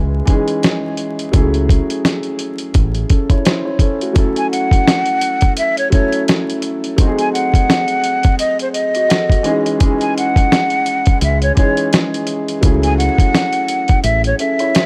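A gritty, dry small-room recording dusted with vinyl crackle carries this reflective, moody boom-bap hip-hop excerpt at 85 BPM in C# harmonic minor, where a dark, boxy concert grand piano with long sustain accompanies throughout, a round, punchy fingered electric bass plays from 0.0 to 3.0 seconds and returns at 11.2, a compressed, tape-warm, sampler-style drum kit with a thumpy kick and medium-tuned snare swings from 0.3 seconds, and a breathy, hollow jazz flute with vibrato and a soft attack takes the melody from 4.4 seconds over chords moving from C#madd9 through A6 and G#7b9.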